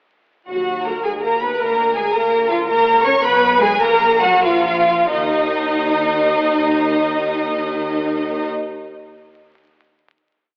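A dusty, telephone-thin sound with vinyl crackle, set in a wet, spacious reverb, frames this short, dramatic and urgent classical-period movement for string orchestra in a lilting 6/8 with free rubato, which slows from 2.1 s to 5.1 s before settling on a held final note. An up-front, clear violin section carries the melody with smooth vibrato, while a lush second violin section, a rich viola section and a more distant cello section each double the tune at the octave. A distant double bass section underpins the whole with sustained bowed bass notes on the beats.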